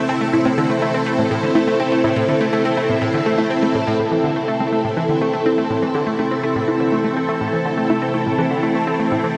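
Ambient, sequencer-driven space music with a cosmic, expansive mood, built on a vintage string machine holding sustained chords up front through phaser and ensemble chorus, a round analog pluck riff with chorus and delay in the low register, and very quiet, detuned unison-pluck arpeggios, all three parts playing from the start and immersed in a huge, dreamy reverb.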